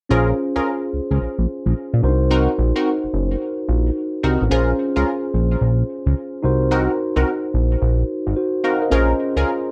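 Swung sixteenths in 4/4 carry this confident, slick R&B groove, cut from a longer piece and alternating between Bbm7 and Cm7b5 chords. A fat, thick analog bass sits loudest and up front, while a mellow, clean tine electric piano with phaser plays the accompaniment and a punchy, detuned sawtooth polysynth adds funky stabs treated with chorus and tape echo. The sound is dry and close, like a 1970s-style studio recording, with all three parts entering together at 0.1 seconds.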